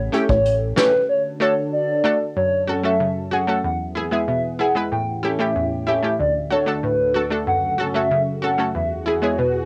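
Sultry and tough, this dancehall excerpt at 94 BPM in F# minor sets a hollow, woody clarinet-like synth lead with chorus, vibrato and analog delay over a lush, detuned unison pad and a round, warbling analog pluck, both pumping under sidechain, while a dark fingerpicked flamenco guitar plays arpeggios, a punchy sawtooth bass and soft brush drums sound only in the opening second before a break at 1.1 seconds, an electronic swell enters in the background at 8.8 seconds, and the chords cycle A7, D, F#m and E with cassette-tape coloring in a small home room.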